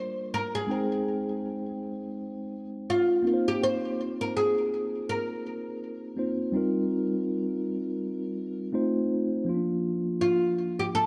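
A plectrum-plucked oud carries the melody up front, its woody, fretless double strings sounding deep and touched with delay. Beneath it, a mellow tine electric piano plays clean, direct accompaniment close to the listener, and both parts run together from the start through to 11.1 seconds. This short, dreamy R&B fragment, cut from a longer piece, moves with a smooth, gently swung sixteenth-note feel in 4/4. The harmony drifts through Abmaj7, F7sus4 and Eb69 before settling on Bb at 9.5 seconds, where a brief new section begins. A moderate, lush hall reverb gives the whole a soft, spacious glow.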